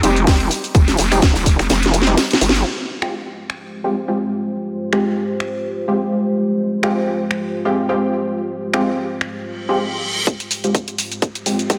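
Bass house at 126 BPM in F minor, cut from a longer piece, with an aggressive, swaggering mood and a 55% swing on the sixteenths. A bold, sawtooth-built synth stab in the manner of an orchestra hit runs throughout, bright and detuned with a noise layer, carrying reverb, digital delay and sidechain pumping, and its filter sweeps from 2.7 s onward. A nasal, saturated wobble bass with a vowel-like formant sweep growls up front only in the opening 2.6 s, alongside a gated 80s kit of hi-hat, snare and tambourine sitting airy and polished in the background. A garage kit of finger snaps, bright hats, shaker and cracking snare plays the whole way through, while a tight electronic kick drops out for a drum fill from 1.7 s, with a band accent landing at 2.5 s, then returns at 10.3 s. From 3.7 s a deep, moody ambient pad swells in on Fmadd9 after the opening Cm, full-bodied with a sub octave, chorus and a long release. 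A reverse cymbal and riser lead into a build-up with a filter sweep at the close, all set in a lush hall reverb.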